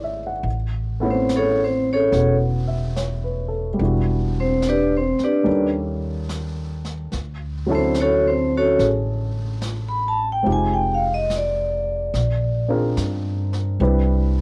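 A tender, late-night jazz ballad at 72 BPM in a swung 4/4, this short excerpt has a vibraphone with medium hard mallets and the motor off carrying a metallic, ringing melody from 1.1 to 12.7 seconds over chords that drift from Aadd9 through Em9, Dmaj9 and Fm7 to Cmaj9. A dark, mellow baby grand piano with audible action noise and short sustain plays accompaniment, while a woody, thumpy pizzicato upright bass on gut strings sits up front and a brushed drum kit with snare and hi-hat enters softly at 0.5 seconds. The piano, drums and vibraphone carry a cassette tape coloring, and light reverb gives the whole an intimate home-recorded feel.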